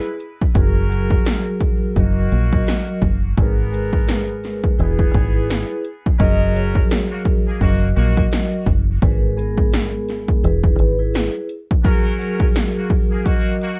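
Smooth, ringing medium-mallet vibraphone with slow motor vibrato and tight, nasal stabs from a straight-muted trumpet section with tape echo open this dark, gritty boom-bap hip-hop excerpt at 85 BPM with a swung 16th-note feel; moments later come up-front 80s electronic pad drums with a punchy kick, gated snare and metallic hats, and a round, foam-muted fingered electric bass. At 6.2 s an airy soft-mallet vibraphone melody with fast motor vibrato and plate reverb floats in the background over a cycle of E, F#add9, D#m/F# and G#madd9, all in a dry, warm-toned mix.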